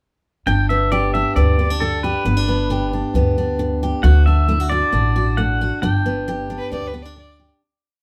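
Country in a nostalgic, heartfelt mood, this short whole piece sets a clean, compressed pedal steel guitar singing a motif-based melody of call phrases with slide and volume swells over a bright, full-bodied fingerstyle acoustic guitar with alternating thumb and a woody, thumpy pizzicato upright bass on a two-beat root and fifth, the band playing live in a small room with wet reverb, as a fade-out begins at 5.8 s and a biting, airy fiddle slips in at 6.6 s with answering blues licks.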